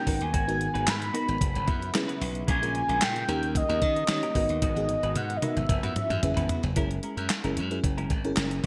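A velvety, chorused synth lead carries the melody up front from the start, over a dreamy FM electric piano with a soft pad layer and tremolo, a very quiet vintage string machine holding sustained chords, and a clean electric guitar riff with lush chorus set in the background. From 0.1 s a glassy, punchy slap bass and a crisp 8-bit drum machine with a thumpy kick, handclaps, toms and gated reverb drive this danceable, late-night slice of early-eighties boogie funk at 112 BPM, moving through minor-seventh and suspended chords, with a drum fill from 4.6 s. The lead drops out at 6.5 s, just before the groove shifts onto an F#9 chord at 6.8 s, all wrapped in a wet plate reverb and bright 1980s-style digital production.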